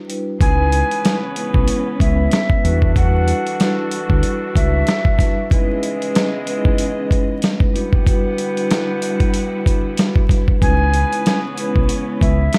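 Boom-bap hip-hop with a reflective, dark mood, built on a gritty, up-front sampler-style drum kit with a thumpy kick. A mellow vibraphone carries a vintage cassette tinge and analog delay. A round dub bass and a breathy jazz flute melody both rest mid-clip before returning at 10.6 seconds. Bright saxophone stabs cut in as lush strings sit in the background, and the mix is set in an echo-heavy small room flecked with vinyl crackle.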